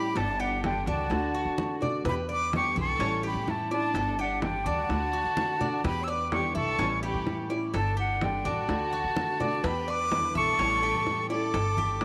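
Cuban son and guajira with a sunny, danceable lift, this excerpt puts an airy, vibrato-rich concert flute up front over a smooth bowed violin section, a full-bodied fingerpicked nylon-string guitar, a metallic double-strung tres picking arpeggios, a growly pizzicato upright bass, soft-handed congas in the background and very quiet round bongos, all cycling through a Gsus2–D–Em7–A7 progression in a moderate plate reverb before a drum fill at 11.8 seconds.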